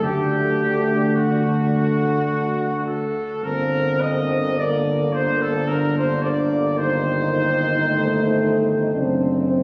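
A mellow trumpet section carries the melody up front from the start, with light vibrato, a soft attack and a smooth top, over a French horn section's second line in the background, two euphoniums in accompaniment (one with a vintage, warm tone) and a close-miked tuba on the bass. This solemn, yearning, hymn-like classical passage for brass band moves in a rubato triple metre through D, G minor, Am7b5 over G and D7 over F#, cut from a longer piece. The trumpets drop out at 8.9 s while the lower brass continue to 9.6 s, the band set in a long church reverb and captured on a phone in the room.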